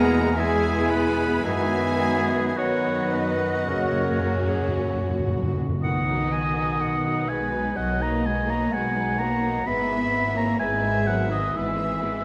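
A solo oboe sings through this tender, serene slow romantic orchestral movement, played with rubato: a background violin section carries the vibrato melody over a second lush violin line, an expressive viola section sliding with portamento, a very quiet close cello section and rich double basses, while an airy flute, a clarinet entering at 2.6 seconds, dark distant French horns holding chords, soft-edged trumpet stabs, and clear trombones sustaining until 5.5 seconds fill out the harmony, and close, medium-mallet timpani add a fill from 3.7 seconds, all bathed in generous reverb.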